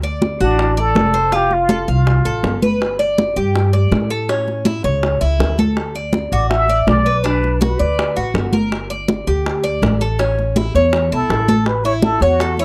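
Relaxed and danceable, this short cut from a longer Cuban son and guajira piece moves at 163 BPM in a straight 4/4. A picked Cuban tres sits up front with metallic double strings, some of them octave-doubled, spinning arpeggios over chords that run from D and F through G5 and A, then Dadd9 and Bm. Beneath it a woody, thumpy upright bass on gut strings plays pizzicato, while ringing, medium-tuned congas sound close and dry and tight, high-tuned bongos struck with hard hands join at 0.2 s, a little lower in the mix and set in a live room. A trumpet with a plunger mute carries the melody in jazz-style phrases, first entering at 0.4 s and returning at 6.3 s and 11.1 s, its wah-wah tone breathy and whispered with a soft attack. The recording has the dry, close feel of a 1970s studio, touched with light reverb.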